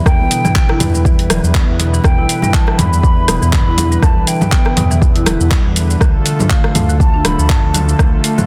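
A swung sixteenth-note groove at 121 BPM in 4/4 drives this afro house excerpt in E phrygian. It rests on an overdriven, up-front electronic kick and a layered deep house kit of handclaps, hi-hat, rim click, shaker and toms, with soft clipping on the snare and very quiet, ringing congas played with soft hands. The mood is warm and earthy. A round, dark analog bass, a woody marimba with medium mallets playing arpeggios, and a smooth, warbling vintage pad holding sustained chords with chorus all carry sidechain pumping. Above them a mellow, hollow silver concert flute carries the melody with vibrato and digital delay. The harmony sits on Em7 before moving to Dm at 6.0 seconds, all within light reverb and a dense, heavily limited master.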